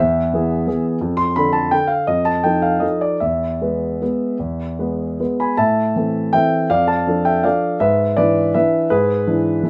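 Nostalgic and elegant, this classical piano waltz in 3/4 moves with a flexible rubato feel, played by a solo concert grand piano that sounds warm and up front, with a deep bass and a range reaching from E2 to C6. A light reverb surrounds the instrument as the music passes through an opening section and then a second one from 5.6 seconds. The harmony drifts between major, minor and seventh chords before the excerpt ends at 9.7 seconds, cut from a longer piece.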